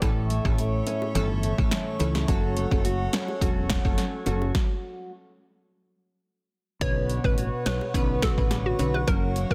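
An overdriven, up-front deep house drum kit with a deep kick, punchy snare, hi-hat and finger snaps drives this hypnotic, sultry dancehall excerpt in B minor at 106 BPM, over a growly, round fretless bass, crisp detuned wavetable chord stabs, a soft flute-like pad pumping with sidechain and chorus, fingerpicked nylon-string guitar arpeggios and low-tuned bongos in the background, pausing for a stop at 4.5 s before a bouncy, hollow square-wave pluck melody with tape echo enters at 6.8 s over a Bmadd9 chord.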